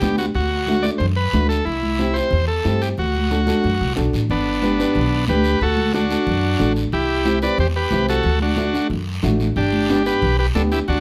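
A straight cumbia groove in four drives this festive, sunny Latin excerpt, with a raspy guiro and soft-handed, high-tuned congas, the congas sitting in the background, beneath a thumpy, woody pizzicato upright bass up front. A buzzy, overdriven vintage combo organ carries the melody with light vibrato, while a dark, worn upright piano, slightly detuned and boxy with audible action noise, adds mellow accompaniment until 10.8 seconds. A drum fill from 3.5 to 4.3 seconds marks the return of the opening phrase, all set in a moderate studio reverb.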